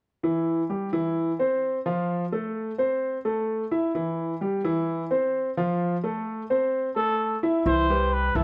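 Sunny and danceable, this short latin cut from a longer piece moves at 129 BPM in C major, opening with a clear, intimate grand piano playing arpeggios through C and F chords, its action noise audible up front. At 7.0 seconds a cup-muted trumpet enters with a veiled, vintage-toned jazz melody carrying vibrato and a plate reverb, and at 7.7 seconds a woody, thumpy pizzicato upright bass joins on a Cmaj7 chord. The whole sits in light reverb.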